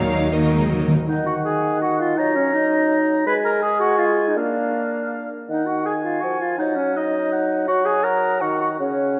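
A dark production set in a reverberant concert hall gives this short cut from a quick classical-period orchestral movement in triple time an urgent, stormy character. It opens briefly with the full string body. Lush, vibrato-rich violin sections carry the melody and a second line, a bright, intense viola section sits in the background, and a smooth cello section and a close double bass section anchor the bass, all of which stop at 0.9 seconds. Underneath, a very quiet, mellow French horn section holds chords while timpani played with hard mallets add an articulate fill, and both fall away at 1.0 seconds. The airy, hollow concert flute and an up-front clarinet carry second lines across the whole passage, joined at 1.1 seconds by a distant, roomy oboe with light vibrato and a soft-attacked, up-front bassoon in accompaniment. From there the woodwinds carry the music through minor harmonies, a major chord and brief chordless moments.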